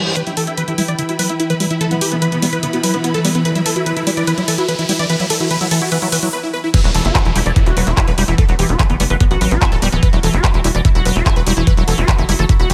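A straight 4/4 pulse at 146 BPM drives this hypnotic psychedelic trance excerpt in E minor, opening with a reverse cymbal and a build-up in which a drum kit of bright hats, handclaps and crash cymbal sets the pace. Over it, a squelchy, resonant acid bass riff with chorus, 12-bit sampler grit and dub echo is swept through its filter, while a huge, detuned supersaw carries the melody through a phaser, low-pass filter and echo. Beneath them an evolving, morphing wavetable pad holds sustained chords in the background, and a lush bowed string section adds expressive texture until 6.3 s, when the riser gives way to a brief break. At 6.7 s the drop arrives with an up-front, knocking electronic kick, joined a moment later by a tight, nasal sequencer bass plucking low, driving notes. The pad, acid bass, supersaw and strings all breathe with sidechain pumping, and the whole mix sits in light reverb.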